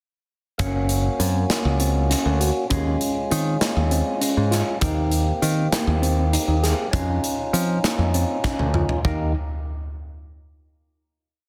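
Intricate and driving, this short progressive instrumental rides a 7/8 groove on a big rock drum kit with a pumping room sound, a bright picked electric bass up front playing a syncopated riff, a worn, slightly out-of-tune tine electric piano repeating an arpeggiated ostinato, and a fat, percussive tonewheel organ holding rootless chords through a stopped rotary speaker, the two keyboards lightly overdriven, until a drum fill at 8.4 seconds leads into a final chord at 9.1 seconds.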